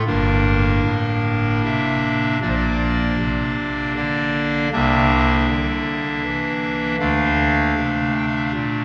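A pipe organ opens on a G minor chord, voiced on a hollow clarinet reed stop with a baroque character and a touch of chiff at the start of each note. This brief passage, cut from a longer classical chorale-style piece, is grave and solemn, moving at 78 BPM in a steady 3/4 with a straight feel. The solo organ covers a deep span from G1 up to G5, and its reed voice sits up front in the mix. The harmony moves from Gm to Bbadd9 at 2.4 seconds, then to C9 and finally to Dm at 7.0 seconds. A long, wet cathedral reverb with a 4.0-second decay surrounds the sound, placing the listener further back in the room until the organ stops at 8.8 seconds.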